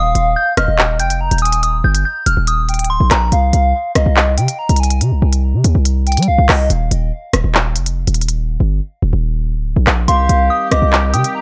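A punchy, heavy 808-style bass with a fast attack sits up front in this tense, dark drill hip hop piece at 142 BPM in a half-time feel, joined by electronic drums of handclaps, crisp hi-hats and rim clicks, a delicate, tinkling FM bell melody coloured by chorus and phaser, and a hollow, woody clarinet-like synth line with vibrato and delay, all set in a digital ambience, before a break arrives at 6.7 s, the hats drop out at 8.4 s, and at 10.1 s the bell and lead return over clear, close-miked woodwind chords with light vibrato as the harmony moves from Eb to Cm.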